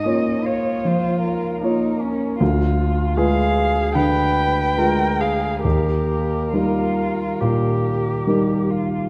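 A muted violin, muted cello and warm concert grand piano begin together in this slow, serene romantic movement for piano trio, a fragment cut from a longer piece in 4/4 with a flexible, rubato feel. The violin carries the melody with a veiled, con sordino tone, softly attacked and touched with vibrato and portamento, while the cello sings a second line beneath it, its bowed sound dark and nasal. The piano, more up front than the strings, supplies the accompaniment with a deep bass and a natural sound. The harmony moves from Bbm/Ab to Ddim7 at 2.4 seconds and settles on Eb at 5.6 seconds, and the violin stops at 8.7 seconds while the cello and piano carry on to 9.1 seconds. A moderate concert hall reverb surrounds the trio, lending the playing a sense of space.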